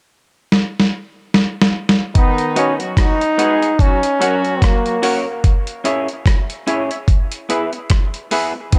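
A laid-back, hazy dub reggae groove at 73 BPM in 4/4, swung on the sixteenths, opens with a drum fill at 0.5 s on a gritty, overdriven sampler-style kit of thumpy kick, medium-tuned snare, rim click and hi-hat, set up front with a small-room character. From about 2.1 s a punchy horn section with vibrato and octave doubling enters, joined at 2.2 s by a bright, roomy solo trombone carrying the melody in B major over B, F#, C#m and E. A slightly broken-up, lo-fi electric guitar comes in alongside hollow, decaying organ stabs with chorus that sit in the background. Dub echo trails the horns, trombone, guitar and organ, and the whole cut from a longer piece has a dark, warm production bathed in digital ambience.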